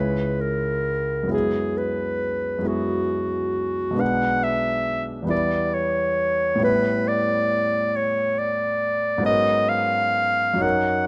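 A bright, close-miked clarinet carries the melody up front in this mysterious, wistful impressionist excerpt for clarinet and grand piano, moving in a slow, rubato 6/8 at 45 BPM. Beneath it, a clear concert grand supplies intimate accompaniment with deep bass, long sustain and audible action noise, drifting through colorful harmonies such as C#m, F#9sus4, Bm6 and G#m11. A moderate recital hall reverb surrounds the polished, detailed sound.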